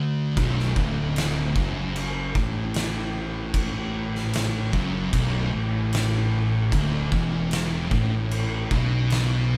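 An oversized, low-tuned acoustic drum kit sits up front in a bright, pumping stone room, its boomy kick, fat snare and dark crash cymbal driving a slow 76 BPM from 0.4 seconds in this short stoner and doom metal passage in B minor. Two dark, distorted fuzz guitars pick a heavy riff in the background from the very start, joined at 0.4 seconds by a growly, overdriven fingered bass, as the band, playing live in one room with light reverb, moves from B minor to a D power chord at 6.7 seconds. The mood is hypnotic and sludgy.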